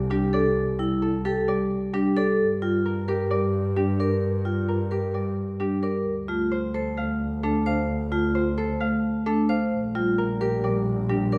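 A mellow, fingerpicked Celtic harp carries the melody over an expressive, bowed double bass with vibrato and portamento, and they are joined at 0.1 seconds by a woody rosewood marimba playing the accompaniment and an up-front, dark, metallic vibraphone ringing out arpeggios with a slow motor vibrato, in a bright, hypnotic minimalist classical excerpt at 131 BPM in straight 4/4 that moves through Cadd9, Gm7, Dm and Bb6 inside a moderate recital hall reverb.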